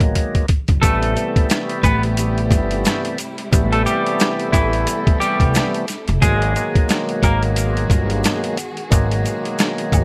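A gritty, compressed, pitched-down sampler-style drum kit sits up front with a thumpy kick, medium-tuned snare, rim click and hi-hat in this dark boom-bap hip-hop excerpt at 89 BPM with a swung 16th feel, where a woody pizzicato upright bass and a reedy, key-clicking tonewheel organ through a slow rotary speaker hold the groove under G#m7 and Am7 chords, while from 0.8 seconds a clean, scooped hollow-body electric guitar carries the melody in spring reverb and digital delay until 7.4 seconds, a very quiet bowed string section adds smooth sustained chords with vibrato and portamento, and a close, dry tube shaker and woodblock tick in the background.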